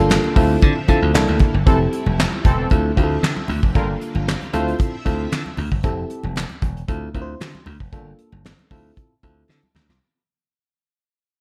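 Early-eighties boogie funk at 115 BPM in D minor, this ten-second cut from a longer piece has a funky, late-night mood, riding a straight 4/4 groove over chords that move between Dm9, C13, Fmaj9 and Gm7. A punchy, bright slap bass and a soft brush drum kit with a fat snare, tight kick, hi-hat and handclaps sit up front, the kit dark and smooth with a rolled-off top and gated reverb, while very quiet, thin-skinned congas add a light percussive layer. A warbling, mellow FM electric piano carries the accompaniment with fast-attack, decaying chords, and a lush string machine with a sub octave and ensemble chorus holds sustained chords in the background until 5.8 seconds. From 1.7 seconds an analog synth brass line enters as a second voice, bold and fat with a filter sweep and chorus, dropping out at 4.8 seconds. The whole passage fades out from 1.7 seconds, and a short drum fill closes it at 9.5 seconds, with the mix kept dry and close.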